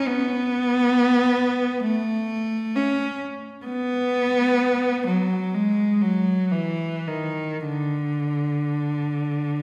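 Classical and expressive in free time, this meditative, lonely fragment of a longer piece features a single bowed cello, rich and smooth with vibrato, heard close and up front from D3 to C#4 for 9.6 seconds, carried by the wet reverb of a church or concert hall.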